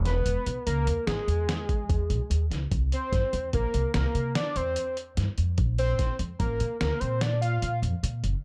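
An upright bass opens this short progressive instrumental cut from a longer piece, its pizzicato steel strings sounding woody and dark, sitting up front and ranging from E1 to C3. Almost at once, a lo-fi sampler-style drum kit joins with hi-hat, a thumpy kick and a fat snare, pitched down, muffled and compressed, with overdrive and the feel of being re-recorded in a small room. A fat analog lead carries the melody between G#4 and F5, blending sawtooth, square, sine and a sub octave into a detuned, wave-folded tone with a fast attack, sustained notes, vibrato and a plate reverb. At 147 BPM in a straight 7/4, the band moves through E6, C7 and Bb chords, giving the mood a bright, intricate quality. The production overall is dark and lightly reverberant, and the lead stops at 7.8 seconds while bass and drums carry on to 8.3 seconds.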